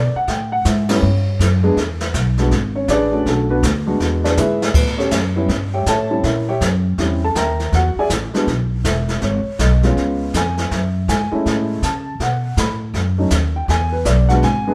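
Relaxed and unhurried, this 14.7-second excerpt from a longer piece is a jazz piano trio swinging at 161 BPM in 4/4, centred on E mixolydian. The upright piano carries the melody with a woody, close-up tone, ranging from F#3 to B5, while the pizzicato upright bass on gut strings sits just as near, thumpy and woody from E1 up to C#3. Entering at 0.3 seconds, the brushed drum kit sounds more distant and roomy, with dark cymbals, a medium-tuned snare, a boomy kick and a rolled-off top. The whole band hits an accent at 0.8 seconds, and the drums play a short fill between 4.0 and 4.8 seconds. The harmony moves through dominant sevenths, a diminished passing chord and a closing turnaround back to E7, all heard in a moderate stone room as a live group playing together.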